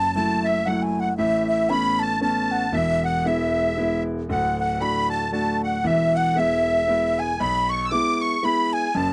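A breathy, wooden baroque flute carries the melody with vibrato and tongued notes over a reedy, shimmering musette accordion second line and a clear concert grand piano accompaniment with deep bass in this bright, lively Celtic waltz excerpt in swung triple time, set in a dry, close 1970s-style studio sound with light reverb as the chords move from F#m7 through Aadd9, E and D.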